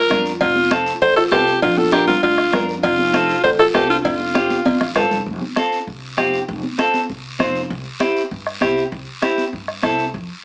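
Sunny and danceable, this brief cumbia excerpt in F major moves at 197 BPM in a straight 4/4, with a growling alto saxophone up front carrying the gritty, edgy melody through a slapback echo while a soft, buzzing kalimba traces a mellow second line in the background, both dropping out at 4.9 seconds. A twangy, clean electric guitar picks bright accompaniment over the F, Bb and C chords as a woody pizzicato upright bass, a soft-beater bombo, hard-hand high-tuned congas and a raspy guiro drive the groove. Ringing cowbell and timbales join at 0.4 seconds and play on through a drum fill that begins at 4.5 seconds and leads into the second section. Moderate studio reverb and a small speaker sound give the whole a compact, boxy character.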